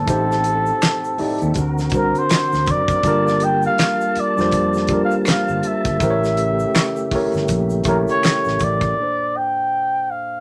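Sensual and warm, this swung 81 BPM neo-soul R&B excerpt sets a veiled, cup-muted trumpet with light vibrato up front on the melody over a worn, slightly out-of-tune tine electric piano, clear tonewheel organ chords colored by chorus vibrato and a slow rotary speaker, a dark, round fingered electric bass, a dry, polished 70s drum kit with a fat snare, tight kick, hi-hat and handclaps, and a tube shaker with finger snaps in the background, until the organ, bass and drums drop away by 9.0 seconds, leaving trumpet and piano alone on a Bbmaj9 chord.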